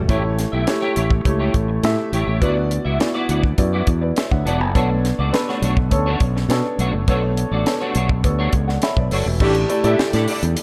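A dark, polished production with light reverb and a small room's ambience frames this short cut from a longer piece of 1980s jazz-funk pop, moving at 103 BPM in a straight 4/4 with a slick, nocturnal mood. A tight, dry funk drum kit sits up front with a high-tuned snare, a tight kick, hi-hat and crash cymbal, while a growling fingered electric bass, overdriven, bright and punchy, anchors the low end just as prominently. A clear, intimate grand piano supplies the accompaniment with a subtle chorus, its natural tone carrying audible action noise, and it plays a fill from 8.5 to 9.4 seconds. Beneath them a clean, picked electric guitar plays a riff, treated with an ensemble chorus and a warm tone. The harmony moves from A7 to D69, then shifts to A7sus4 as a new section begins at 9.4 seconds.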